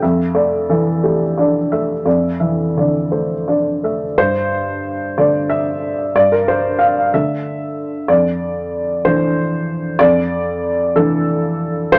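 Moderate studio reverb surrounds a solo upright piano that sits up front, its worn, woody tone carrying a slightly detuned edge. This melancholic, wistful piece of neoclassical minimalist piano unfolds in a loose, rubato 6/8, ranging from F2 to F5. It opens on Dmadd9/F, moves to Gsus2 at 4.2 seconds, and returns to Dmadd9/F at 8.1 seconds before the cut at 12.0 seconds.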